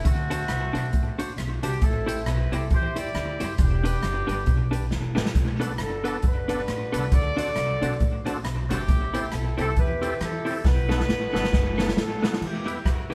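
A swung ska groove drives this mischievous fragment from a longer piece, with the up-front big-band drum kit, with its punchy kick and tape echo, playing fills at 4.9 and 10.7 seconds while a woody pizzicato upright bass and a very quiet, dark fingered electric guitar riff hold down the low end. A mellow, distant horn section carries the melody over clean, compressed hollow-body jazz guitar accompaniment touched with tape echo. At 5.6 seconds a gritty, overdriven tonewheel organ joins with stabs through a slow rotary speaker, key click and all, as the band plays live in a small room.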